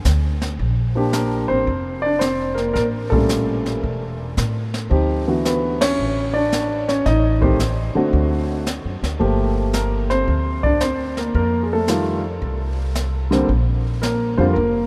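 An up-front grand piano carries the melody from 1.0 seconds in this swinging, sophisticated jazz piano trio excerpt in Bb major, moving at 112 BPM with a lilting swing feel over chords such as Bb6, A7b9, D69, Gm9 and Fadd9. Beneath it, a woody pizzicato upright bass with steel strings and a brushed kit with dark cymbals, a high-tuned snare and a boomy kick play throughout. The whole band hits an accent at 5.7 seconds, all set in a vast, echoing space with a long, huge reverb.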